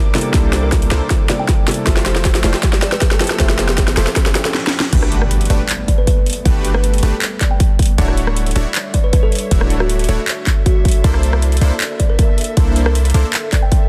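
A dense, heavily limited future bass excerpt at 157 BPM in half-time, bright and lush, where a woody kalimba melody and dark, softly bowed chamber strings float behind an up-front overdriven kick, a boomy 808-style bass, punchy detuned supersaw stabs and a trap kit with sharp snare and metallic hats, while a background grand piano and a very quiet riser and impact build toward the drop at 4.9 seconds.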